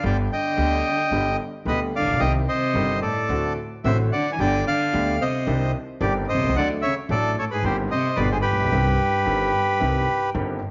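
A passionate, melancholic tango cut from a longer piece opens at 110 BPM with a rubato feel in C harmonic minor: a reedy, up-front bandoneon carries the melody over a smooth, bowed solo cello second line with vibrato in the background, a warm, intimate concert grand piano with audible action noise and deep bass, and a woody, thumpy pizzicato upright bass on steel strings, set in a wet echo chamber reverb with small room ambience and nothing above 7.5 kHz.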